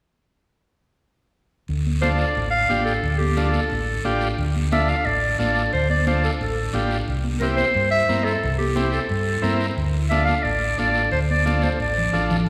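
A clear, jazz-style clarinet takes the solo up front, its soft attack and light vibrato singing over a round, punchy fingered electric bass in this fiery, danceable cumbia cut from a longer piece, moving at 178 BPM in D minor. Bright, high-tuned congas sit in the background alongside a raspy guiro, while a vintage, buzzy combo organ adds clean vibrato accompaniment as the harmony shifts from Dm to C and back. A drum fill arrives at 11.5 seconds, and the whole ensemble rings in the generous reverb of a church or concert hall.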